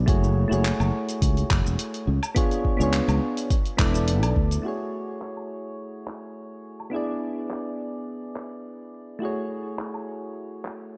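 Soft, round electric-piano-like synth keys with chorus and tape echo open this wistful sunset chillout excerpt in F# minor at 105 BPM together with a bright, growly fretless electric bass under lush chorus, joined by an overdriven deep house kit of handclaps, hi-hat, shaker and woodblock with a deep electronic kick, until the kick and bass fall away at 4.5 s and 4.6 s, leaving the mellow keys and low-pass-filtered percussion to drift over F#m9 and E7 in a dark, warm hall reverb.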